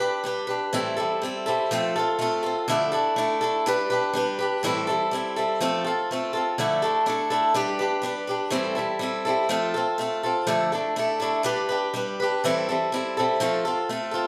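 A straight 4/4 pulse at 123 BPM carries this reflective, wistful rock passage in D dorian, cut from a longer piece. A bright, boxy acoustic guitar plays alone up front for the full 14.3 seconds, picked in a swing style with a slapback echo as it cycles through G, Am7, F and Dmadd9. A moderate large-studio reverb lends the sound of a band playing live in one room.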